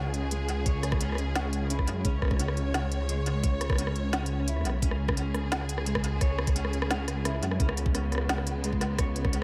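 Echo-heavy and lightly reverberant, this dark, spacious half-time drum and bass excerpt pairs sustained chords from a clear, focused studio string section, roughened by vintage 12-bit sampler grit and sidechain pumping, with slightly broken-up electric guitar arpeggios drenched in lush chorus and analog delay, while a deep, rumbling detuned saw bass sits up front beneath a woody-snared electronic kit with smooth hats and dub echo, and a knocking electronic kick that enters at 0.7 seconds and drops out briefly between 4.1 and 4.8 seconds.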